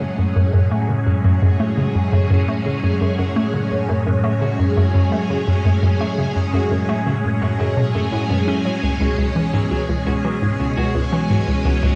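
Swirling string-machine chords, treated with ensemble chorus and phaser, open this cosmic, mysterious stretch of sequencer-driven space music alongside a hollow, bouncy square-wave pluck riff that sits up front with chorus and delay, plus a very quiet, dark clean electric guitar picking arpeggios. A breathy, wind-like tuned noise texture drifts in the background from 0.1 s, carrying its own built-in reverb. The echo-heavy mix has a wet plate reverb and a cassette-tape character, and the harmony moves from F#madd9 to C#m7 at 8.8 s in this fragment cut from a longer piece.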